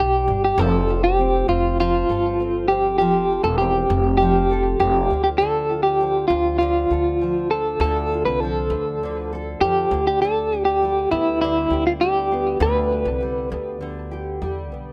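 This heartfelt, carefree acoustic pop excerpt opens with a twangy, slightly broken-up electric guitar carrying the melody up front, picked and compressed, with tremolo and delay. Beneath it are a full-bodied, fingerpicked nylon-string guitar, double-tracked, and a woody pizzicato upright bass, all at a straight 100 BPM in 4/4 as the chords move from a rootless Cadd9 through F, Dm and G/D. The electric guitar stops at 13.5 seconds while the nylon-string guitar and bass continue to 14.9 seconds, in a dry, rough home demo mix with little reverb.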